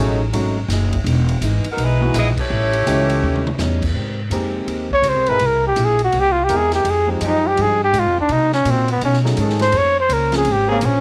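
Big band swing at 166 BPM, brassy and joyful, this short excerpt opens with a tight, bright saxophone section carrying the melody over warm grand piano, a picked acoustic guitar in the background, a woody pizzicato upright bass up front, and a polished drum kit with dark cymbals and a punchy kick, all with a cassette-tape tint on the horns and keys. After a band accent at 2.3 seconds and a drum fill, a mellow, breathy trumpet takes a solo from 4.9 seconds with scooped notes and a smooth top. A trombone section with light vibrato and a soft attack joins on sustained chords beneath it. The sound sits in a small room with light reverb, like a home recording on cassette, moving through lush extended chords such as B13, Abmaj9 and Fm9.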